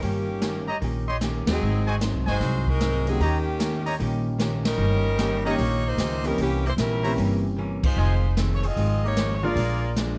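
A brassy, swinging big band excerpt in a bright 4/4 swing feel, cut from a longer piece. An edgy saxophone section carries the melody up front with vibrato, while a clear trumpet section enters at 0.7 seconds with stabs and light vibrato, and the whole band hits accents at 1.4, 4.6 and 7.8 seconds. Underneath, a woody pizzicato upright bass sits prominently in the mix. A polished drum kit with a punchy kick, ride, hi-hat and crash adds a short fill around the final accent. A dark, clean hollow-body archtop guitar picks out its accompaniment in the background, joined from 1.5 seconds by a concert grand piano with deep bass. The harmony moves from a long dominant seventh through C7b9 and Fm7 to a closing Bb7, and the close, detailed recording carries a light reverb.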